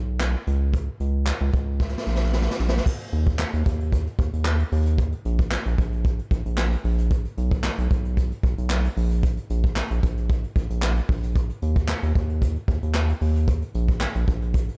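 The recording is dry and dark, with a warm production and little reverb. This upbeat, carefree dance-pop piece, cut from a longer track, moves in a straight four-four feel. A round, deep analog bass sits up front from the very start, blending square, sine, triangle and sawtooth tones with a wave-folded edge, a fast attack and sustained notes, all pumping under sidechain compression. An acoustic drum kit played with brushes enters at 0.2 s and carries a tight kick, a medium-tuned snare, hi-hat, handclaps and crash cymbal, its rolled-off top giving it a vintage, roomy character. A drum fill from 1.8 s leads into the next section at 2.9 s, where the groove carries on to the end.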